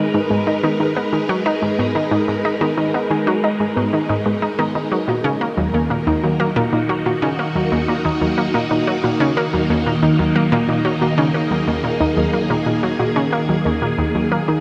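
A straight 4/4 pulse at 91 BPM drives this expansive, mysterious stretch of sequencer-driven ambient space music, cut from a longer piece and moving from G#m to D#m. Up front, a nasal, wave-folded analog pluck repeats a riff through chorus and delay, while a swirling, warbling string machine holds sustained chords through ensemble chorus and phaser, and a soft, dark pluck traces arpeggios in the background. All three parts bloom in shimmer reverb inside a huge, wet space with an 8.0-second tail, captured on cassette tape.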